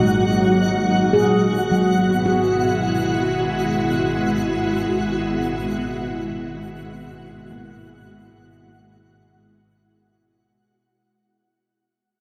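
A dreamy, reverb-soaked mix with a long, huge ambient tail sets a spacious, reflective mood in this free-time ambient excerpt, which fades out from the start. Up front, a soft additive organ-like pad holds pure, detuned, sine-based chords with a slow attack and long release, thickened by ensemble chorus. Beneath it, a dark chamber double bass section sustains a low G#1 with bowed vibrato and a smooth top, while an analog drone made of evolving sawtooth and pulse waves sits barely audible in the background. A handpan of nitrided steel, played with soft fingertips, spins mellow, ringing arpeggios through a tape echo, and a twinkling granular texture adds sparkling FM shimmer an octave up. The harmony moves from D#m over G# to Eadd9 over G# at 1.3 seconds, and the handpan rings on by itself until 11.5 seconds.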